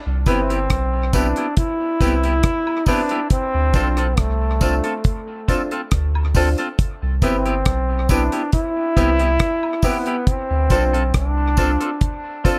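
This roots reggae excerpt moves at a laid-back, uplifting 69 BPM in C major, swaying between Cmaj7 and Dm7 over a round, fast-attack dub sub bass that enters at 0.1 seconds and a dry, up-front drum kit with a tight kick, hi-hat and rim click. A clear, punchy trombone carries the melody with light vibrato and scooped notes, its dub echo and plate reverb shared by a bright, twangy clean electric guitar. A woody, slightly detuned upright piano adds intimate stabs with audible action noise, while tambourine and woodblock sit quietly in a small room.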